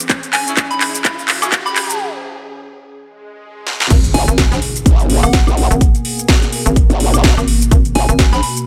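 Swung sixteenths drive this gritty, swaggering bass house excerpt, where a punchy kick and a tape-warm house kit of cracking snare, metallic hats, handclaps, shaker, woodblock and crash back a soft, pure synth bell with phaser and delay, a sweeping, detuned sawtooth pad with lush chorus and sidechain pumping, very quiet stabs from a bright horn section near the start, and a riser and swell that build to the drop at 3.9 seconds. There an impact lands and a hollow, bouncy FM bass enters, joined moments later by an aggressive, wobbling growl bass with tube saturation, in a dry, close mix.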